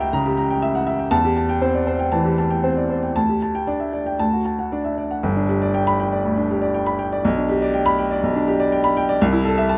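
Sparkling and brilliant, this short cut from a longer classical virtuoso piano study moves at 114-124 BPM in 4/4, with a rubato feel in G major and tuning set to A4 = 439 Hz. A solo baby grand piano carries the whole passage, its open, up-front tone ranging from G1 to B5 under close, detailed microphones and light reverb. The opening phrase moves from C#dim7 through Am7/E to a Dsus4 that settles onto D. At 5.2 s a new section arrives on G, passing to G/B before closing on Am/C at 9.2 s. The sound stays warm and up front while the harmony builds a bright, expectant arc.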